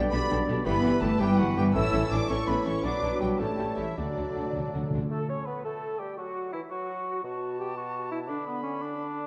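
A rich cello section leads the bass line with smooth double basses beneath, while a violin section with vibrato carries the melody in this lively, spirited orchestral passage in 6/8, played with rubato at roughly 103-116 dotted-quarter beats per minute. A second violin line, distant violas, mellow French horns, very quiet trombones and vintage-toned trumpet stabs fill out the texture, and soft-mallet timpani with a round calf-head tone play a fill from 4.0 seconds before the strings and brass stop around 5.0 seconds. An airy, close flute, a dark cor anglais, a very quiet clarinet and a background bassoon continue to 9.3 seconds, all set in a wet scoring-stage reverb.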